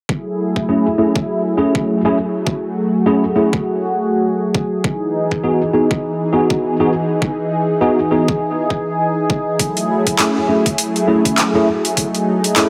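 A swung glitch hop groove at 101 BPM in 4/4, with its 16ths swung at 59%, rides on an overdriven, knocking electronic kick that sits up front. The mood is swaggering and funky, set in F# dorian as the harmony moves from F#m9 to Emaj7 at 4.8 seconds and back to F#m9. A warm analog pad holds sustained chords with a smooth, detuned sawtooth tone, a soft attack and a moving notch, coloured by chorus, vintage 12-bit sampler grit and sidechain pumping. From 0.7 seconds a worn, slightly out-of-tune tine electric piano adds clean, direct stabs through ensemble chorus, a low-pass filter, tape echo and its own sidechain pumping. At 9.6 seconds an overdriven dubstep drum kit joins with handclaps and bright hi-hats, and a lush hall reverb of moderate length gives this passage, cut from a longer piece, a roomy finish.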